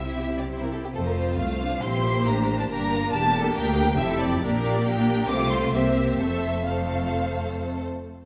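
A brisk, lively classical-period movement for string orchestra in F major, moving at 136 BPM in a straight 4/4, opens with all five sections sounding together from the start of this short passage cut from a longer piece. Up front and close, a rich first violin section carries the graceful melody with expressive vibrato, reaching from G4 up to D6. Beneath it, a second violin section, lush and soft in attack, sits more distant as it traces a second line between E4 and C5, while a focused viola section with a smooth top fills in the accompaniment. Cellos, even and smooth though set in the background, share the bass with a dark, expressive double bass section that reaches down to E1. The harmony moves from C through F, Bb and G minor before a cadence on C7 resolves to F at 6.2 seconds, all bowed within a moderate scoring-stage reverb that lends the ensemble a sense of space.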